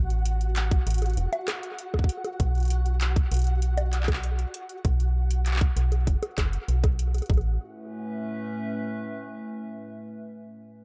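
A dry, echo-heavy mix opens this short IDM excerpt, which is wistful and playful at 98 BPM in A major. A metallic FM bass with a fast attack and dark decay sits up front in the low register from the start, beside a tight electronic kick that arrives at 0.7 seconds. A booming analog drum machine of bongos, handclaps and metallic hi-hats carries overdrive and dub echo, with a roomy, re-recorded character. Far beneath, a flickering, grainy granular texture adds a soft, reverberant shimmer over the A5 and B5 chords. At 7.7 seconds the rhythm parts have stopped, and a warbling, nostalgic tape-like pad with chorus holds an Aadd9 chord, lo-fi and detuned, until the close.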